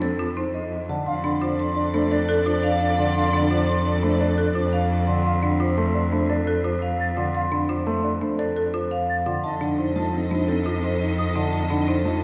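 Up front, a rich, focused bowed cello anchors the bass on a low F2 beneath this bright, hypnotic minimalist classical pattern music at 172 BPM in 6/4, where a ringing vibraphone with medium hard mallets and slow motor vibrato carries the melody over warm grand piano accompaniment with audible action noise and dry, woody folk marimba arpeggios, while a distant, mellow concert flute adds high arpeggios from 1.1 seconds, and an airy alto flute and a smooth symphonic string section sound from 1.1 to 5.0 and again from 9.4 seconds, all moving from F7 to Dm/F and back within a wet church reverb in this short piece cut from a longer work.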